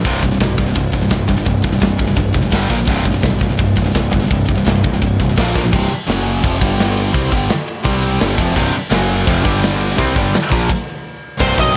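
This heavy metal excerpt opens on a relentless, heavy riff at 169 BPM in straight 4/4, with a scooped high-gain guitar and a second distorted high-gain guitar picking low in the background over a growly, overdriven picked bass. A tight drum kit enters almost at once, sitting up front in a big room with a tight kick, a medium-tuned snare and bright crash, china and ride cymbals. The riff centres on C5, moving through G5 and Bb5 at first, then shifting to F#5, F5 and G5 once the second section begins at 5.7 seconds, where a double-tracked distorted guitar takes over part of the rhythm layer. The band cuts to a stop at 10.7 seconds. At 11.4 seconds a dark, distorted lead guitar bursts in up front for a brief high phrase as the excerpt cuts off, all within a small-room ambience.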